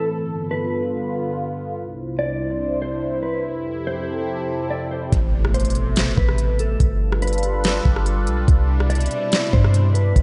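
Spacious and hazy, this atmospheric cloud-rap fragment opens with a dark, fingered electric guitar melody drifting through chorus and delay over a warbling, detuned sawtooth pad; at 5.1 seconds a deep, boomy 808-style bass and an up-front, tape-warm half-time R&B kit with a knocking kick and smooth hats arrive alongside a very quiet electronic impact, the whole mix soaked in lush hall reverb.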